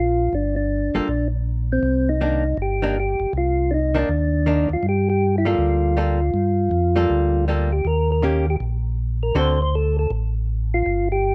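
Smoky and soulful, this swinging soul jazz organ trio fragment sets a percussive tonewheel organ melody, sung through a slow rotary speaker and plate reverb with third harmonic percussion, over a round, mellow organ bass line that also turns slowly through its rotary speaker with vibrato and key click. A clean, picked archtop guitar, hollow-bodied and compressed, accompanies from 0.9 to 9.6 seconds as the harmony moves from Gm7 through Cm9 and Gm9 to Eb7 and D7. The production is dark, with light reverb and all three parts up front.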